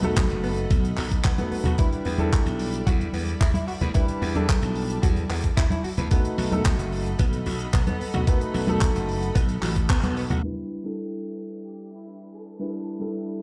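A groovy, cosmic nu-disco cut opens with a dark, mellow grand piano pumping through a low-pass filter and dub echo, backed by distant, bright orchestral strings, a clean, chorused electric guitar riff, growly, up-front slap bass, a dry 70s drum kit with handclaps and shaker, ringing congas and a thumpy electronic kick, until a band accent at 9.9 seconds gives way at 10.4 seconds to a filter sweep over the piano, strings and drums, where a reedy chamber violin section slips in with a delayed phrase at 11.7 seconds, the mix sounding as if played on a big sound system in a bare stone room.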